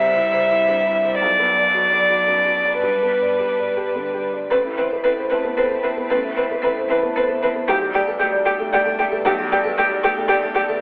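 Intimate and hopeful, this short excerpt of neoclassical piano and strings moves in a rubato 3/4 at around 114 BPM in G major. A dark, smooth-topped solo violin carries the melody up front, bowed sul tasto with a soft attack and light vibrato, while a single cello traces an airy second line in the background. A felt-muted upright piano plays mellow, boxy accompaniment close to the ear, its thin felt and audible action noise adding a homely texture, and a chamber string section holds sustained chords in the background. At 4.5 seconds a bright, metallic vibraphone struck with medium hard mallets enters with ringing arpeggios, its motor vibrato and slapback echo sitting mid-forward in the mix. The harmony passes from C through Bm and G before shifting to Amadd9 and Gadd9/B, all set in a wet recital hall reverb that is narrowed by a telephone-like filtered sound.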